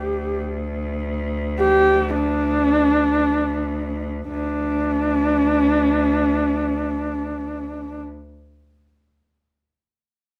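Mongolian folk music, solemn and windswept, in which a husky horsehead fiddle sings a bowed melody with vibrato and sliding portamento over a biting, airy-bowed cello drone, both played up front by single players in one room with moderate studio reverb, the pace easing over the first 4.3 seconds of this fragment from a longer piece.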